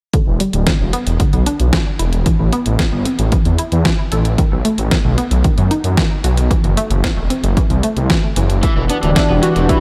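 Nostalgic and nocturnal, this synthwave excerpt moves at a steady 113 BPM in 4/4 with a straight feel in E minor, set in a light digital ambience. A punchy analog-style electronic kick and a clean 12-bit drum machine with hi-hat and a fat, sampler-style snare carry the beat from the start, both with a tape-warm color, while a thick, detuned saw bass sits up front with chorus. In the background, a round analog pluck plays bright arpeggios through chorus and tape echo, moving over chords from E7(no3) through A5, B and F#m7b5. At 8.6 s the pluck stops as the harmony lands on Em7 and a shimmering, mellow pulse-width pad enters with sidechain pumping, joined by an overdriven semi-hollow guitar riff drenched in lush chorus and tape echo. A bold, nasal unison lead with vibrato and tape echo slips in at 8.9 s to begin a melody just before the cut.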